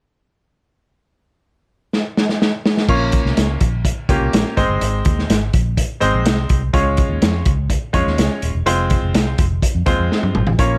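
A straight 4/4 pulse at 125 BPM drives this urgent, uptempo 1960s-style soul excerpt in Bb dorian, tuned slightly flat to A4 = 438 Hz. The vintage drum kit starts things off with a fill at 1.9 seconds, playing crash cymbal, hi-hat, kick, snare and toms with a muffled, lo-fi small-room sound, dark cymbals, a medium-tuned snare and a tight kick placed up front. At 2.9 seconds the bright grand piano and the muted fingered electric bass arrive together as the harmony moves through Bbm, Ab, Db and Fm. The piano's accompaniment is brilliant and polished with short sustain, sitting up front between Ab3 and Db5, while the foam-muted bass is round, dark and amped, reaching down to Eb1. Another drum fill near the close keeps the momentum driving, and a light reverb gives the mix a sense of space.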